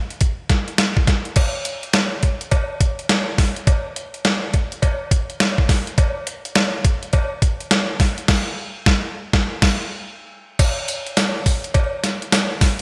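A clean 12-bit drum machine sits up front in this confident, slick R&B fragment, its thumpy kick and medium-tuned snare carrying a sampler-style, tape-tinged character, joined by hi-hat, tambourine and crash cymbal. The kit has a gated reverb and sounds re-recorded in a large room, and the groove swings on sixteenth notes in 4/4. A metallic, acoustic cowbell, heard in a live room, enters at 1.4 seconds and sits lower in the mix behind the drums. A band accent begins at 8.3 seconds and leads into a break at 9.4 seconds, before a new section takes over at 10.6 seconds. A lush hall reverb and bright 1980s-style digital production give the whole clip a glossy, spacious sheen.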